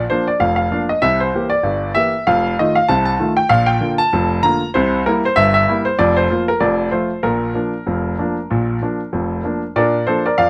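Jaunty and lively, this short ragtime piano excerpt in Bb major moves at 96 BPM in 2/4 with a light swing on the sixteenths. A solo grand piano with a clear yet worn, natural tone sits up front, spanning from F1 to Bb5 across 0.0 to 10.5 seconds, while close, detailed miking and light reverb keep every note distinct. The harmony cycles through Bb, C7 and F7 before settling back on Bb at 7.2 seconds, as if lifted from a longer piece.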